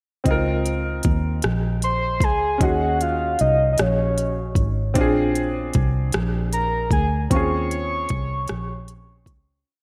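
Bathed in a lush hall reverb with a big arena sound, this short, complete slow six-eight R&B piece feels sensual and tender, its single verse moving through rich extended chords before fading out from 7.3 seconds. A smooth, electronic drum kit with soft kick, smooth hats and rim clicks sits up front beside a dark, foam-muted fingered electric bass whose round, punchy line slides between notes, while a clear baby grand piano holds rootless chords with short sustain and a slapback echo. Entering at 1.8 seconds, a soft octave-layered synth lead, full-bodied with a sub octave, chorus, phaser, vibrato and slapback echo, sings a free, sustained melody.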